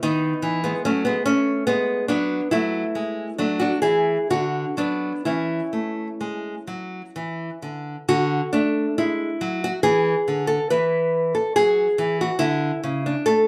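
Serene and dance-like, this brief classical passage cut from a longer baroque-style dance in 3/4 features a solo fingerpicked nylon-string guitar, bright and intimate with the crisp ring of fresh strings, sitting up front in a live-sounding studio room with a wet reverb, moving with a flexible rubato through a gentle opening section before shifting to a second idea at 8.1 seconds that closes on a rootless C#madd11 chord.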